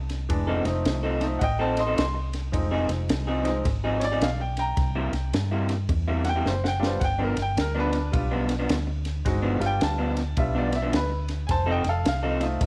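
This excerpt has a light studio reverb around a swaggering, rollicking electric blues shuffle at 107 BPM, with a bright, woody upright piano accompanying, a round, foam-muted electric bass, a twangy, slightly broken-up guitar riff entering at 0.5 seconds, and a dark compact cocktail drum kit with a punchy kick, high-tuned snare and ride that plays a fill at 6.5 seconds, all moving through F7, Fm7, C7 and G7.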